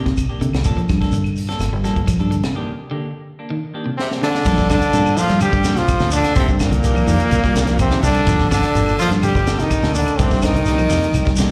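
A straight 4/4 afrobeat groove drives this defiant excerpt from a longer piece, carried by a tight funk drum kit with a high-tuned snare, tight kick, hi-hat and crash, and a punchy, foam-muted fingered electric bass played direct. A grainy, mellow shekere and faint, woody claves add percussion, while two guitars sit in the background: a clean semi-hollow guitar with slapback echo playing stabs, and a slightly broken-up guitar picking arpeggios. The harmony moves between Cm9 and Gm9, and a break arrives at 2.6 seconds, capped by a drum fill. At 4.0 seconds a brilliant, forceful trombone takes the up-front melody with vibrato, shadowed by a raspy, gritty tenor saxophone on a second line with scooped notes, both carrying slapback echo. The whole band sounds like a live gig heard through a venue's PA, with a moderate club reverb and a recital-hall sheen.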